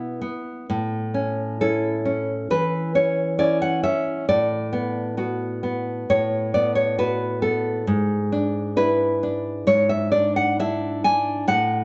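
Sunny and warm, this short romantic passage for solo classical guitar moves with a loose, rubato feel, drifting from an opening E through A and Bm7/A before landing on E7/G# at 7.9 seconds. The nylon-string guitar is fingerpicked and sits up front, its full-bodied, deep classical tone reaching from low G#2 up to G#5. A moderate recital hall reverb surrounds it, and the top end rolls off above 8 kHz.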